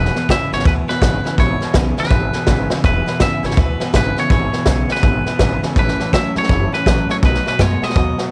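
This short excerpt opens on a lively studio room with light reverb, where a rowdy, rollicking rockabilly groove in E major swings at 164 BPM, its drum fill landing at 2.7 seconds and the chords moving from E to A and then to B7 at 7.2 seconds. A twangy, compressed electric guitar carries the melody through analog delay over a thumpy, woody pizzicato upright bass and an up-front vintage kit with a punchy kick and rolled-off top. Further back, a clean electric guitar plays a low riff, a full-bodied dreadnought acoustic guitar is picked with audible finger squeak, and a detuned, jangly honky-tonk upright piano adds boxy, short-sustained accompaniment.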